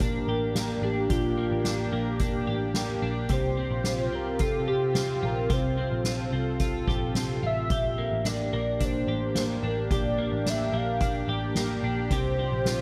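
Floating and blissful, this dream pop excerpt drifts at 109 BPM in Bb major, where a velvety, detuned synth lead carries the melody with vibrato, chorus and delay over a lush, thick sawtooth pad, warm, clean twelve-string electric guitar arpeggios with analog chorus and delay, a dark, round foam-muted picked bass, and an up-front soft-mallet drum kit with a boomy kick, all moving between Bb6 and Csus4 chords in a moderate booth ambience.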